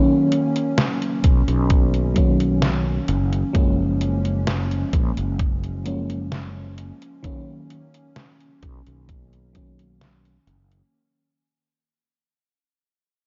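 A dark, warm mix sits in light digital ambience, its top end rolled off so nothing rises above 7.5 kHz, in this short cut from a longer vaporwave piece. At a slow 65 BPM in straight 4/4, the mood is woozy and nostalgic, drifting between Bmaj9 and F#maj9 while the whole passage fades out. An FM electric piano layered with a soft pad opens at 0.0 seconds, lush and dreamy with a detuned, mellow tone, a fast attack that decays, a faint noise layer, and tremolo, analog chorus and analog delay shimmering over its chords. A detuned 8-bit digital drum machine arrives at 0.3 seconds with hi-hat and a medium-tuned snare, tape-warm and re-recorded in a small room. At 1.2 seconds a thumpy, sampler-style electronic kick and a growly, punchy fretless electric bass join, the bass sitting low and up front with a warm, amped character.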